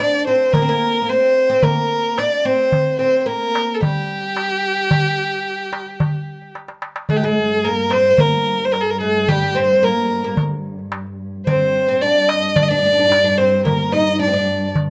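Light reverb gives this short cut from a longer Arabic maqam ensemble piece a soft sense of space, and its mood is longing and soulful in a steady, straight four. A single bowed violin carries the melody up front, its tone rich and focused with vibrato and a smooth top. Beneath it, a fretless oud with double strings plays a plectrum-plucked second line in a warm, woody, acoustic voice. A small metal-shell darbuka keeps the pulse with soft hands, sounding crisp, high and close and dry, and it plays a fill from 6.6 s. At 7.1 s the music moves into a new section, where a lush symphonic cello section enters on a dark, expressive bowed drone with vibrato, settling beneath the violin and oud.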